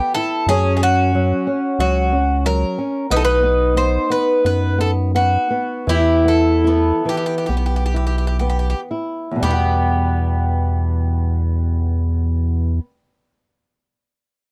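A fado-style ballad in a free, rubato 4/4, longing and mournful, taken from a longer piece. An up-front Greek bouzouki carries the metallic, double-stringed melody while a fingerpicked twelve-string acoustic guitar shimmers beneath it with a second line and audible finger squeak, a thumb-plucked flamenco guitar supplies the accompaniment, and a round, deep analog bass with a dark, detuned sustain joins at 0.5 seconds. The pace slows from 3.1 seconds until a new section opens at 9.4 seconds, heard in a dry, close 1970s-style studio sound with light reverb.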